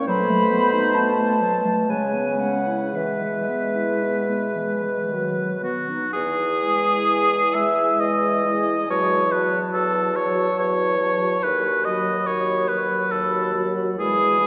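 In a flexible, rubato triple metre, this serene and lyrical excerpt from a slow romantic classical movement for wind quintet sets an airy, straight-toned, tongued flute melody above a warm oboe second line that sits up front with light vibrato and a soft attack. Beneath them, a dark, present clarinet and a mellow French horn with vibrato supply the accompaniment, while a distant, roomy bassoon carries the bass. The ensemble sounds in the wet reverb of a church or concert hall, and a new passage begins at 6.2 seconds.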